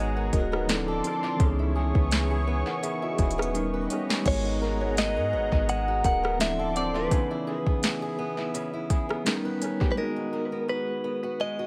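Late-night and full of longing, this excerpt of contemporary R&B moves at 84 BPM in G# minor with a light swing on the sixteenths, cycling through lush chords such as G#m9, C#m7 and D#7b13. A mellow tine electric piano and a boxy, fingerpicked acoustic guitar carry the accompaniment throughout, both trailed by tape echo, while a smooth, detuned analog pad with warbling chorus holds sustained chords until 7.1 seconds. Underneath, a clean, sine-like 808-style bass sits deep and boomy up front over the same span, and an electronic drum kit with a soft kick, sharp snare and crisp hats, overdriven and echoed, enters at 0.3 seconds and marks the turn with a fill before 4.3 seconds. At that point a bright, twangy electric guitar, recorded direct and compressed, takes the melody through phaser and tape echo. The whole excerpt floats in an echo-heavy digital ambience that gives it a dreamy, after-hours glow.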